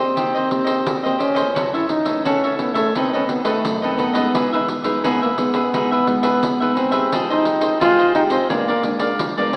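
A forceful, punchy trombone leads this sunny, joyful samba-choro fragment at 86 BPM in 4/4, playing up front in a close-miked jazz style with scooped notes. A crisp picked cavaquinho and a woody, fingerpicked nylon-string guitar with old strings and a deep classical tone supply the accompaniment through changes such as Gbm7, B7b9, Emaj7 and Fm9, while a jingly pandeiro played with soft hands joins at 0.2 s. The whole is bathed in a wet concert-hall reverb and carries an AM-radio colour.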